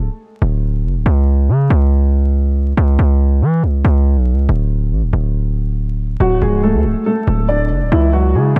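A heavy, saturated 808-style bass opens this tense, cold drill excerpt on its own, its aggressive, fast-attack notes decaying up front over vinyl crackle and light studio reverb, at 140 BPM in a half-time 4/4 feel. The harmony is absent at first, then D5 arrives at 4.5 seconds. At 6.2 seconds a dark, mellow concert grand piano takes up the melody, colored by subtle chorus and tape echo, as the chords turn to C#m near the close.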